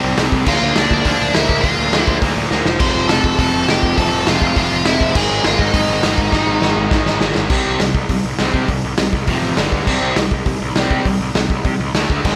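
Rowdy and upbeat, this punk rock excerpt drives a double-tracked, distorted electric guitar riff over a growly fuzz bass and a gritty garage drum kit with a punchy kick, while a biting, overdriven lead guitar carries the melody from 0.5 to 7.2 seconds, a drum fill at 6.3 seconds pushes the band into a fresh section, and the whole thing sits dry with little reverb, the guitars and drums up front.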